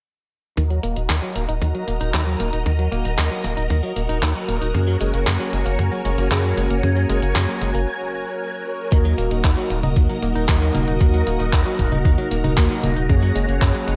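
Dry, tape-warm and nostalgic, this danceable Italo disco excerpt in Eb minor at 115 BPM sets lush, phased string-machine chords and twangy, delayed clean guitar arpeggios over a round, deep analog bass with a filter sweep, a thumpy electronic kick, and detuned 8-bit congas, handclaps and hi-hat bathed in gated reverb, with fat, chorused synth brass stabs joining at 4.7 seconds and a break at 7.9 seconds before the second section.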